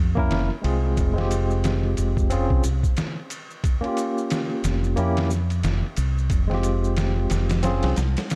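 A deep, round fingered electric bass sits up front in this melancholic, hypnotic trip hop excerpt, moving between F1 and F2 at 90 BPM in 4/4 with a swung 16th-note feel. Beside it, a barky tine electric piano played through a combo amp adds bright, clean accompaniment in F harmonic minor, colored by tremolo and tape echo. The sampler-style drum kit is pitched down, compressed and overdriven, its thumpy kick, medium-tuned snare and ride cymbal carrying a gritty edge. Maracas enter at 1.0 seconds, saturated and ringing in the background. The harmony cycles through C7b9/F, Fmadd9, Fm and Gm7b5, while digital ambience gives the production a dark, warm sheen.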